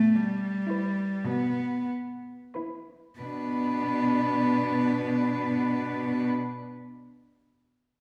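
A pure, floating cello melody, bowed sul tasto with a soft attack and a slightly nasal edge, enters at 0.7 s on B4 in this solemn, elegiac classical fragment for cello ensemble in B minor. Beneath it, a dark, intimate second line joins an up-front, warm accompaniment with light vibrato and a bass cello on B2, both sounding from the start, all moving in a slow, rubato 6/8 that slows through the opening before arriving on B minor at 3.2 s. A reverberant recital-hall acoustic surrounds the close-sounding players, and the passage is cut from a longer piece.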